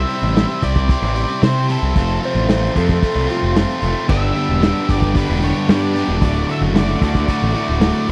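Classic rock at 112 BPM with a swaggering, confident strut, this dry, close-sounding excerpt sets an up-front fuzzed bass and a muffled, dark-cymbaled vintage kit under a bright, cranked stack-guitar riff and a distorted octave-fuzz lead melody with slapback echo, while a very quiet, shouting tonewheel organ holds sustained chords over C, F, G and D, a compressed slide guitar adds a brief second line from 2.3 to 3.6 seconds, and a crunchy background guitar joins with its own riff at 4.1 seconds.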